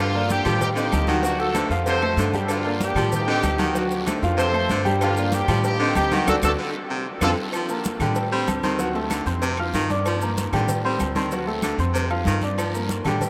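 A bright, punchy horn section carries the melody with tight vibrato over the opening 7.3 seconds of this fiery, passionate salsa excerpt in G minor, moving briskly at 190 BPM. Beneath it, an edgy, forceful baritone saxophone adds a present second line with its own vibrato, while a warm, polished grand piano supplies the accompaniment and a woody pizzicato upright bass anchors the low end. Congas with a thick skin and hard hands, ringing metal agogo bells and timbales, woody claves, grainy maracas and a raspy, saturated guiro sit in the background, with a tight, high-tuned cowbell barely audible. The harmony cycles through Gm7, Am7b5, D7 and F, and a drum fill with a band accent from 6.3 to 7.5 seconds leads into the second section, where the horns have dropped out. A huge, wet ambient reverb places the whole band in a vast, echoing space.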